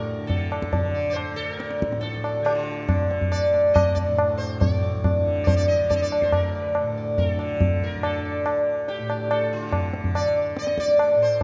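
Longing and meditative, this fragment of a longer Hindustani classical performance in raga bhairavi opens with a plectrum-plucked sitar singing its melody up front, its round, buzzing tone shimmering with sympathetic strings over a softly plucked, warm tanpura drone low beneath it. The low-tuned tabla enters at 0.3 s, close and dry with a short ring, and the music gathers pace throughout as the phrase shifts into a new section at 4.6 s. A wet reverb in a scoring-stage space surrounds the sound, and the top end is rolled off to a dark, mellow finish.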